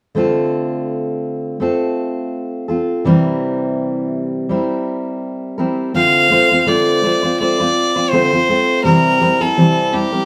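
Lightly swung sixteenths at 83 BPM in 4/4 carry this reflective, wistful pop passage in D minor, cut from a longer piece, where a dark, full-bodied fingerpicked steel-string acoustic guitar sits up front over Dm7 and C7 from the start, joined at 6.0 seconds by a single bright, nasal violin playing the melody with light vibrato and an airy bow, the two heard as a band playing live in one small room with a wet reverb.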